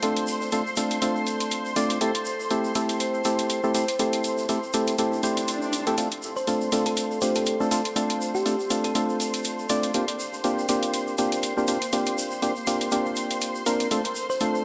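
Deep house at 121 BPM in D minor with a late-night, moody swing, this excerpt rides on a hollow, dark organ stab up front with chorus and dub echo, an overdriven electronic hi-hat re-recorded in a large room, a grainy tube shaker in the background and a silky, detuned analog string pad shimmering with ensemble chorus over chords moving from Dm7 through Am7 to C9sus4. A metallic vibraphone played with medium mallets drifts in the background from 2.0 s with dub echo, an electronic swell enters behind it at 5.2 s, and a round, tine-like thumb-piano-style synth pluck takes over the melody at 6.4 s. The whole mix sits in a moderate echo-chamber reverb.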